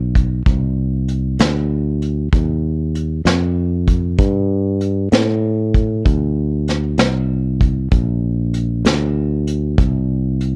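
Soulful and mournful, this slow blues in 12/8 moves at 64 BPM and is cut from a longer piece, with a fingered electric bass sounding warm, direct and up front from the first moment. A vintage brush drum kit joins at 0.2 s, its medium-tuned snare, tight kick and hi-hat caught acoustically in a small room with a rolled-off top. The dry sound carries the warbly pitch drift of worn old cassette tape throughout the roughly 10-second passage.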